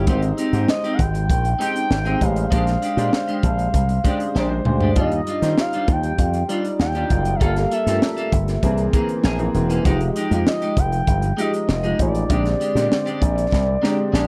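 A dry, polished 1980s jazz-funk pop passage at 98 BPM in straight 4/4, upbeat and glossy, built on a bright, punchy slap bass through an envelope filter and a crisp fusion kit with a high-tuned snare and pumping small-room sound, both up front, with drum fills at 4.4 and 13.5 seconds. A clear, slightly boxy baby grand piano with analog chorus accompanies through chords such as Abmaj7, Ebmaj9 and Caug7, while a clean, twangy picked electric guitar plays a riff under lush chorus. From 0.7 seconds a smooth, warbling vintage lead blending sawtooth and sine tones, wave-folded and dark, with vibrato, portamento, chorus and slapback echo, carries the expressive melody, and the piano adds a fill at the close.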